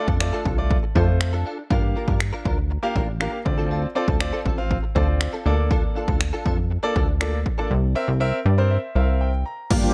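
Carefree and summery, this dance-pop excerpt rides a straight feel, with a clear, intimate grand piano playing sidechain-pumped accompaniment beside a bright, direct-recorded clean electric guitar riff thickened by ensemble chorus. A punchy, funky analog bass with a sawtooth filter pluck pumps alongside an up-front house kit of punchy kick, finger snaps and crash cymbal, moving through chords from F6 to Gm7, Dm7, Bbmaj7/D and C7 in a dry room. After a silent gap from 7.7 seconds, the piano carries a fill, and at 9.7 seconds a lush, detuned unison pad and a round, warbling analog pluck playing background arpeggios arrive, both with chorus and sidechain pumping.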